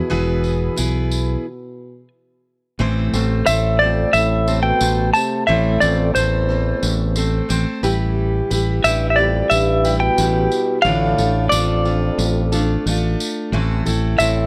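A clean, compressed semi-hollow electric guitar carries the melody up front with tremolo in this yearning, stirring indie folk excerpt, whose arrangement builds in a straight 4/4. Beneath it, a bright, full-bodied jumbo steel-string acoustic guitar picks the accompaniment, a round fingered electric bass holds the low end, a jingly tambourine adds percussion, and a mellow, distant French horn with light vibrato plays a low second line. A stop falls from 1.5 to 2.8 seconds before the next section begins, and the recording sits in studio reverb with the worn, warbly pitch drift of old cassette tape.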